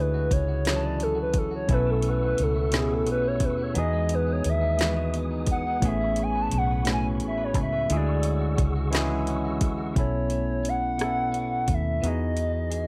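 Tender and warm, this slow six-eight R&B excerpt moves at 58 BPM through lush chords from Dmaj9#11 to B9sus4, Emaj7 and Amaj9, with a hollow, woody clarinet-like synth lead carrying a soft solo melody from the start to 10.0 seconds, colored by chorus and slapback echo. Up front sit a barky tine electric piano through a combo amp, a dark, round, foam-muted fingered bass and a smooth electronic drum kit with soft kick, woody snare, rim click and metallic hats entering at 0.3 seconds. In the background, a slightly broken-up picked electric guitar adds a second line, while a mellow, flute-like tonewheel organ with key click and fast rotary speaker holds sustained chords from 1.7 seconds, all in a dry sound.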